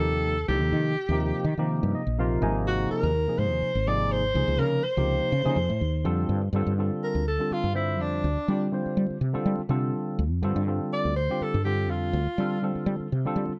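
A lightly swung 4/4 groove at 123 BPM drives this short, nocturnal electric jazz fusion excerpt, with a growly, round fretless bass anchoring the low end while a barky tine electric piano, touched with subtle chorus and heard through a combo amp, comps on chords like Eb69, Abadd9 and Dbmaj7 and slips in a brief fill at 1.7 seconds. A clear alto saxophone with vibrato and a roomy, distant jazz tone carries the melody, stepping into a solo at 6.5 seconds over a G9sus4 before dropping out at 12.6 seconds. Light reverb and a dark production give the cut a late-night glow.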